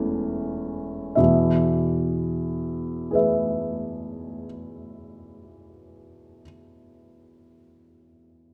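A baby grand piano sits up front with an intimate, natural tone and audible action noise, playing alone from E1 to E5 in a serene, nostalgic romantic nocturne in E major, cut from a longer piece. The pulse is slow, around 30 BPM in dotted quarters in 12/8, with free rubato, slowing over the opening 1.2 seconds on an A/E chord before settling onto E. A recital hall's 1.5-second reverb surrounds the piano with a wet glow.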